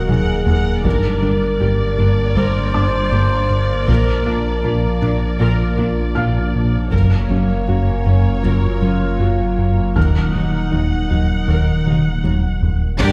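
Hybrid orchestral and electronic film score with a brooding, futuristic mood, moving at an unhurried pace through a dark chord cycle over a stage reverb heard from further back in the room. Lush viola and a mellow French horn section hold the harmony with a swirling, nasal phased analog pad. Below them a saturated sub bass, a round analog bass riff and very quiet cello and double bass sections anchor the low end, while a soft chorused pluck arpeggiates with delay and a very quiet taiko ensemble drives the pulse with fills at the opening and near 11.9 seconds. A felt-muted upright piano with boxy action noise adds a dim, intimate texture from 2.7 seconds, and at 13.0 seconds violin sections and a punchy trombone section enter just as the excerpt is cut.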